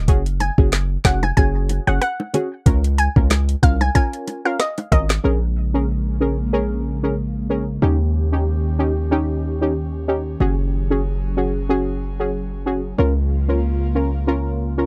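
Hypnotic and bouncy, this dancehall excerpt moves at 93 BPM in Bb minor with a light 16th-note swing and a dark, warm production bathed in light reverb. A punchy, heavy 808-style bass with a sine core and fast, decaying notes sits up front throughout, joined by a brassy, detuned sawtooth synth stab that pumps with sidechain and chorus. For the first 5.2 seconds an electronic island pop kit drives the groove with a knocking kick, woody snare, metallic hats, rim clicks and handclaps, while close, dry, low-tuned bongos played with soft hands add round acoustic texture. Over this, a bright analog pluck built from sawtooth and square waves carries the melody high in the register, colored by a filter sweep, a moving notch and tape echo. At 5.4 seconds the drums, bongos and pluck have dropped away, and an airy, breathy pad with slow attack and long release fills out sustained chords, pumping alongside the brass stab. 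The harmony cycles through Gbsus2 and Db6, then Bbm7 and Eb7, before returning to Gbsus2 and Db6.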